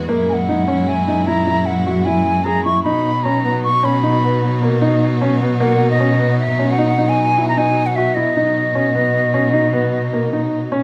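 Close, detailed and lightly reverberant, this hypnotic, urgent cut from a longer contemporary chamber piece moves at 152 BPM in 7/4, with a dark, bowed solo cello singing the bass line with vibrato and portamento up front, a polished baby grand piano rolling arpeggios, a lush symphonic string section holding smooth, clear sustained chords, and a pure wooden flute carrying the tongued melody from 0.3 seconds, as the harmony shifts from F#9 to B.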